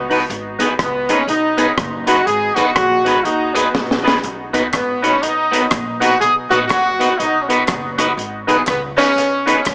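A swung, bouncy ska groove rides on a crunchy breakbeat kit with a punchy kick, high-tuned snare, rim clicks and hi-hat, with a short drum fill at 3.7 seconds and a very quiet group handclap joining at 4.7 seconds, while a woody pizzicato upright bass sits low underneath. A tight, clear horn section carries the cheerful melody up front with light vibrato and dub echo, over a twangy, slightly broken-up electric guitar with phaser and a fat, percussive tonewheel organ that stabs in the background through overdrive, slow rotary speaker and dub echo. The mix has a small-speaker, small-room character with moderate echo-chamber reverb, and this clip is cut from a longer piece.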